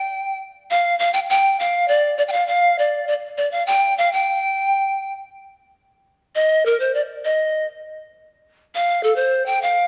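In a straight 2/4 at 100 BPM, this festive, earthy Andean folk excerpt in G minor features a lone pan flute playing solo from start to finish, ranging from A4 to G5. The flute sits close and up front, with a woody, airy tone, a crisp, chiffy attack and a straight yet unsteady sound. A long recital-hall reverb surrounds it within a dark production, and the phrase shifts to new material at 5.5 seconds.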